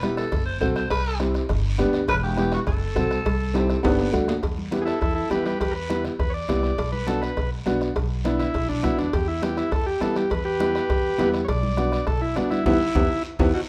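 A driving, danceable cumbia groove in straight 4/4 rolls on soft-beater bombo, bright congas, a band-limited guiro and ringing cowbell and timbales beneath woody pizzicato upright bass and a clear, boxy upright piano with audible action noise, while a raspy, gritty tenor saxophone solos from a distance until 4.1 seconds before a reedy, up-front combo organ takes the lead from 4.8 seconds, with a drum fill and band accent capping this cut from a longer piece in a large studio room.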